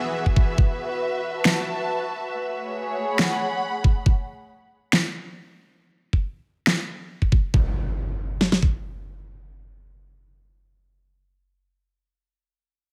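Set in a light, digital ambience, this chaotic, aggressive stretch of heavy wobble dubstep, cut from a longer piece, moves with a half-time feel. A lush, detuned supersaw pad with vintage 12-bit sampler grit and sidechain pumping holds bright, sustained chords only until 0.6 seconds. Alongside it, a dark, woody string section with vibrato and a smooth top sits up front, also pumping, as the harmony passes from E to F sharp minor to A before the chords drop away. The drum kit brings a knocking kick and a huge, tape-warm snare in a brief early hit, then returns at 3.8 seconds with studio reverb. An overdriven electronic snare, layered and up front, adds weight through the middle. From 7.5 seconds an electronic impact marks the start of a new section.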